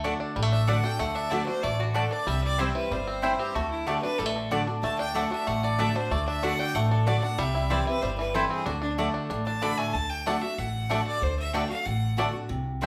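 A clear, earthy fiddle sits up front with light vibrato, entering at 0.5 s and carrying the solo line through this driving, virtuosic bluegrass passage at 188 BPM in D mixolydian, moving between D and C chords. Beneath it, a bright, full-bodied dreadnought guitar picks the accompaniment, a twangy, percussive banjo rolls out arpeggios with fingerpicks, and a woody mandolin adds double-string stabs. A thumpy pizzicato upright bass anchors the low end, all heard as a band playing live in one room with moderate large-studio reverb, in a passage cut from a longer piece.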